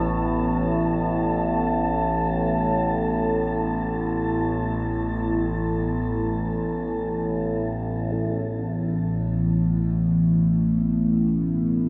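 Cavernous and desolate, this dark ambient drone drifts in free time around an Asus2 chord, tuned to A4 = 442 Hz and steeped in a cathedral reverb with a 6.1-second tail. Up front, a resonant ring-modulated drone with moving overtones holds the low register, while a deep, moody analog pad with chorus and phaser sits in the background and fades out over the first 8.1 seconds. An airy, breathy wind-like noise texture hovers high above until 8.2 seconds, and the dark, warm production gives the excerpt a sense of vast, empty space.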